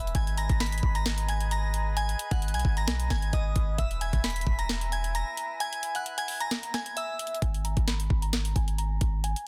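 A glassy FM synth bell carries the melody over a deep, boomy 808-style bass, a trap drum kit with knocking kick, sharp snare and bright hats, and a distant small flute group holding pure, vibrato-tinged chords. This is a menacing, melancholic half-time trap excerpt at 132 BPM in G# minor, moving between G#madd9 and E. The kick drops out from 5.6 to 7.4 seconds, and at 7.4 seconds the flutes stop while a filter sweep works across the chorused bell in a dense, heavily limited mix with digital ambience.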